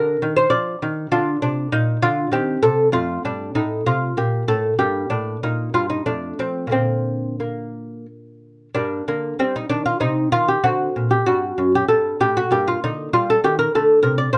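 In a flexible 3/4 that breathes with rubato, somewhere between 87 and 101 BPM, this short classical fragment unfolds as a baroque-style dance for solo lute. The mood is grave and introspective, the harmony settling in B-flat major before turning toward G minor at 8.8 seconds, where chords such as Cm and D7 lend the passage a darker, searching quality before it comes to rest on a bare D5. The lute, heard alone and up front from start to finish, is fingerpicked with a delicate touch across a span from F2 to D5. Its gut strings give a mellow tone, and the paired double strings, some of them octave-doubled, add fullness to each note. Light reverb surrounds the instrument with a gentle sense of space, and the fragment, cut from a longer piece, ends at 14.4 seconds.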